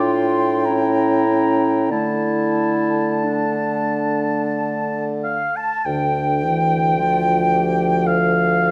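A slow, rubato pulse in 3/4, drifting between 45 and 57 BPM, sets the solemn, elegiac tone of this D minor romantic movement for wind quintet, cut from a longer piece. An airy, straight-toned flute sings the melody from the background with soft attacks, while a clear oboe sits up front on a second line just beneath it. The dark French horn and a roomy, distant clarinet fill the accompaniment, and a close-miked, mellow bassoon anchors the bass; oboe and bassoon both carry light vibrato, and the harmony moves from Dm/A through A7b9 to settle on Dm at 5.9 seconds, all within a moderate recital hall reverb.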